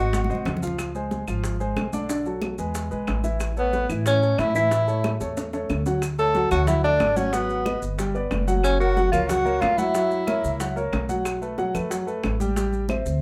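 A brief drum fill opens this lively, sunny Afro-Cuban jazz fragment at 183 BPM in 4/4, with the breathy tenor saxophone and a mellow silver flute sounding together for a moment before dropping out and returning at 3.6 s. Up front, the saxophone carries the melody with a smooth top and light vibrato in a jazz solo style, while the flute trails in the background as a tongued, unsteady second line until both stop at 10.8 s. A warm concert grand with deep bass provides accompaniment throughout, alongside a thumpy, woody pizzicato upright bass on gut strings. Tight, high-tuned bongos and bright, thin-skinned congas struck with hard hands drive the percussion, along with close, dry, grainy maracas and woody claves set back in the mix. The harmony moves from A major to D major at 6.0 s, passing through chords such as C#maj7, Dmaj7 and F#7, with a second drum fill leading into that change, all framed by a moderate club reverb.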